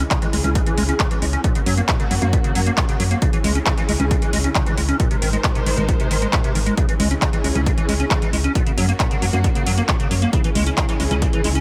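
Uplifting trance at 135 BPM in C# dorian, this euphoric, emotional passage is cut from a longer piece and moves through a C#m, F#, G#add9 progression. A warm studio string section holds sustained bowed chords with vibrato and portamento, its smooth top softened by a low-pass filter and breathing with sidechain pumping. Alongside it, a squelchy, resonant acid bass plays arpeggios with a square-wave bite and filter sweeps, thickened by ensemble chorus and delay. Beneath, a round, dark FM bass with a fast attack and tube saturation anchors the low end, also pumping with sidechain. A layered techno kit of handclaps and metallic hi-hats, re-recorded in a small room, plays from the start, and the dry, punchy analog kick enters at 0.1 seconds, all set in light reverb.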